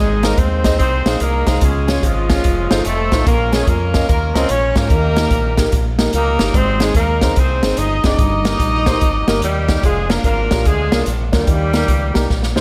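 A breathy tenor saxophone with slapback echo and scooped notes shares the melody with a clear, distant horn section over a dark, worn grand piano with audible action noise and a round, punchy fingered electric bass through an envelope filter, while a polished, up-front big-band drum kit joins at 0.2 seconds to drive this jubilant yet reverent uptempo gospel excerpt at 146 BPM in swung 4/4 in Ab major, closing on a drum fill at 12.3 seconds.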